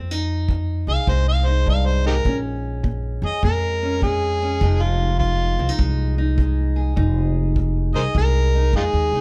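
A swung 4/4 pulse at 102 BPM drives this brief, brooding cut from a longer acoustic country blues piece in F minor, its smoky mood resting on a Fm7 to Bbm7 and back to Fm7 progression. Upright bass, played pizzicato with a growly, up-front tone, and a dark, boxy parlour guitar fingerpicked on old strings both sound from the start. A punchy kick drum, played with brushes in a small room, joins at 0.5 seconds. At 0.9 seconds the amplified, overdriven harmonica steps forward to carry the melody as a jazz-style solo, gritty and close, with light vibrato, tongue slaps and scooped notes set in plate reverb. A light reverb surrounds the whole recording.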